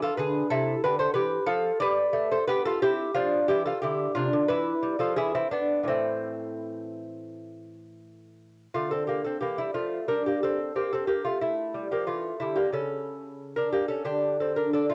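With the sound of a home cassette recording and a light reverb, this short cut from a longer classical piece presents a grave, introspective baroque-style dance in 4/4 for solo lute, fingerpicked up front on bright, delicate gut double strings with some octave-doubled courses, moving with rubato at around 82-94 BPM in A minor before shifting to D minor at 8.7 seconds.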